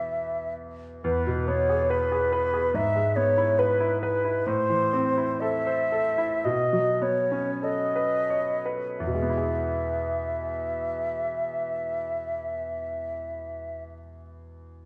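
A recital hall's wet reverberation surrounds this tender, serene romantic duo for flute and grand piano, cut from a longer classical piece. The silver concert flute carries the melody in an airy tone with vibrato and tongued notes, sitting up front in the mix. The concert grand piano supplies brilliant accompaniment from a deep bass register, with a present and forward sound. The playing is freely rubato in 4/4, slowing through the first nine seconds as the harmony moves through E, E/G#, Am and B9 and comes home to E at 9.0 seconds. The flute's line ends at 13.8 seconds, and the piano rings on alone until 14.9 seconds.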